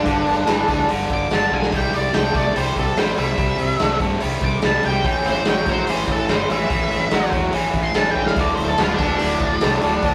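A dark, fuzz-soaked lead guitar opens this swaggering, gritty blues rock and southern rock excerpt, playing a solo in its upper register with wah and distortion over a biting, double-tracked overdriven rhythm guitar that grinds out a low riff up front. Almost at once a growly fuzz bass, fingered and overdriven, settles underneath, while a raw garage drum kit joins with hi-hat, a punchy kick and a medium-tuned snare in a bright stone room with a rolled-off top. The straight 4/4 groove moves through G5, C, A5 and D5 chords, with drum fills at 1.5 and 8.2 seconds. The whole thing has the rough, tube-saturated sound of a rehearsal room, with a moderate reverb and all four parts holding through to the end.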